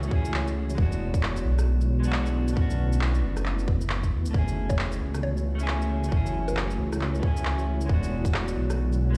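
Ghostly and rainy, this future garage excerpt swings in 4/4, with a tight, tape-warm kick up front and a rumbling, detuned saw bass pumping under an ethereal, airy pad coated in ensemble chorus and 12-bit sampler grit. A dark, clean picked electric guitar with tape echo plays the accompaniment, while electronic shaker, handclaps and rim click patter throughout, all moving over F#m7, E7 and Bm7 chords. A woody, round mallet-like synth pluck, softened by chorus and phaser, surfaces in the background from 4.7 to 6.8 seconds, and the whole mix sits in a large, reverberant room.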